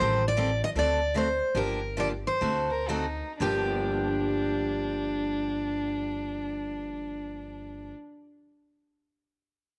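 Bittersweet and fiery, this short excerpt of acoustic string swing in G minor moves in a swung 4/4, with the tempo ranging from 113 to 162 BPM and slowing down over the first 3.4 seconds. A picked steel-string acoustic guitar carries the melody up front, its full-bodied jumbo tone and fresh strings bringing audible finger squeak. A second picked steel-string guitar, brighter and concert-sized, supplies the accompaniment through a minor progression that begins on Am7b5, D7 and Gm7 before a D7b9 returns it to Gm7. Underneath, a pizzicato upright bass with gut strings sounds woody, dark and thumpy, touched by transformer saturation. At 2.7 seconds a single violin enters with a second line, played sul tasto with light vibrato, a soft attack and an airy, intimate bow, placed close and up front. Light reverb and studio ambience frame the ensemble.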